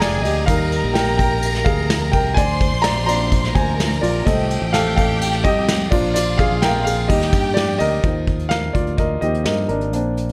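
Piano-driven pop in Eb major at 127 BPM opens with a polished, present grand piano up front, taking a solo role over a brush drum kit, a fingered electric bass and a violin section, all in a straight 4/4. The mood is anthemic and hopeful, with the harmony moving from Eb through Bb and F and back to Eb. The lush, bowed violin section carries a second line from F4 to C6, its vibrato rich yet focused and set at a distance behind the piano. Dark, smooth brushes on a tight kick, medium-tuned snare and dark cymbals sit up front with a rolled-off top, while the round, punchy bass holds the low end from F1 to G2. At 8.0 seconds the violins drop out and the piano continues its solo over an Ebsus2 chord, ending at 10.3 seconds of this clip cut from a longer piece, all framed by a small room reverb.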